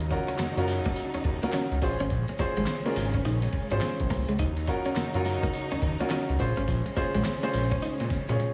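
A studio-reverb sheen wraps this slick, confident new jack swing groove at 105 BPM in Bb minor, where a fat, detuned sawtooth analog bass sits up front beside a gritty, thumpy sampler-style drum kit with fat snare, handclaps, tambourine and toms, while an up-front baby grand piano, a clean chorused electric guitar riff, lush distant strings holding Ebm7 and Bbm9 chords, and a grainy background shaker fill out this short cut from a longer piece.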